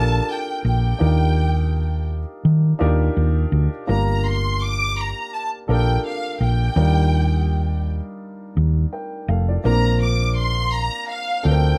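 Lush and smooth, this short excerpt of 1970s-style soul sways at a relaxed pace with a light swing, moving through rich minor-seventh and major-ninth harmonies. A hollow-body electric bass sits up front with a round, punchy tone, while a dark grand piano adds mellow, intimate accompaniment with long sustain and audible action noise. Above them, a distant studio violin section carries the melody with expressive vibrato and a slapback echo, all in a dry, rough home-demo mix.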